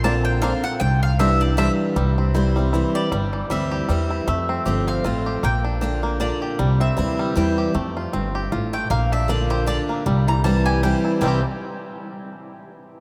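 Lively and joyful, this bluegrass excerpt swings along at 156 BPM in 3/4 in C mixolydian, opening with a mandolin solo from 0.0 to 2.0 seconds over Bbadd9 and Cadd9 before settling into a C, F, Bb chord cycle. The woody, double-strung mandolin and the twangy, percussive fingerpicked banjo carry the melody, while a bright, up-front picked steel-string acoustic guitar fills in the accompaniment. A dark, thumpy pizzicato upright bass anchors the low end, and the whole performance sits in a vast cathedral reverb that makes the space ring and echo.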